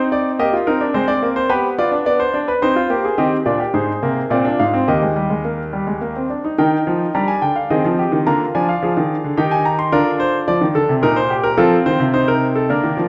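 This classical excerpt is a baroque-style four-part fugue for solo concert grand piano, driving yet solemn in mood, moving at 107 BPM in a straight 3/4. It opens in C minor, and at 3.2 seconds the harmony shifts to E-flat major, where the piece settles for the rest of its 13.1 seconds. The piano spans from Eb2 up to C6, with a deep bass anchoring the contrapuntal lines and a natural, up-front presence that keeps each voice clear. A recital hall reverb with a 1.5-second decay wraps the instrument in a wet, spacious ambience. Toward the close, the harmony leans through seventh chords over moving bass notes, ending on an F7 that leaves the passage unresolved, as if mid-phrase in a longer work.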